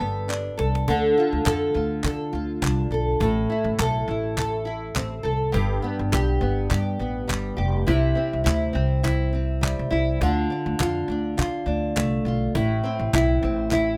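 Acoustic pop with a carefree, heartfelt mood and a light swing, this excerpt sets a small, fingerpicked, double-tracked nylon-string guitar up front beside a woody pizzicato upright bass, while hollow group handclaps from 0.3 seconds and a dry, hard-handed cajon with faint snares in the background fill out a rough home demo mix in moderate studio reverb, moving from Gadd9 through Dm, Am, G and C.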